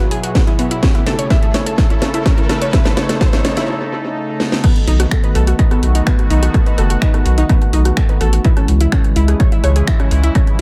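A straight 4/4 pulse at 126 BPM drives this dark melodic techno, anchored by a punchy, up-front electronic kick beneath a cracking, tape-warmed house kit of snare, rim clicks, finger snaps, hi-hat and crash, its hats and cymbals pumping and trailed by analog delay. A warbling, lo-fi pluck arpeggiates over a bright, evolving sawtooth pad with chorus, both pumping, while drum fills and a background riser build until 3.7 s, followed by a short break. The drop arrives at 4.6 s on a B7 chord, a round, deep, nasal analog bass joins at 4.9 s, and the harmony later moves to C#m at 8.4 s in an echo-heavy mix with light reverb.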